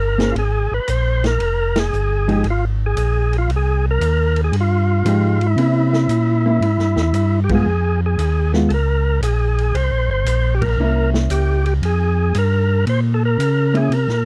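A soul jazz organ trio excerpt cut from a longer piece, this smoky, soulful passage swings at a relaxed 4/4 lilt. A percussive tonewheel organ carries the melody up front, its full, thick tone lightly overdriven with key click, third harmonic percussion and a fast rotary speaker. Beneath it a second organ supplies the bass line, mellow, round and dark, colored by chorus vibrato and a slow rotary speaker. A dark, clean hollow-body electric guitar adds compressed, picked accompaniment, while a vintage drum kit of hi-hat, ride, punchy kick and medium-tuned snare sits low in the mix with a rolled-off top. The band hits accents together at 1.7, 7.4 and 10.5 seconds over minor ninth and altered dominant harmony, all captured in a dry, close 1970s-style studio sound.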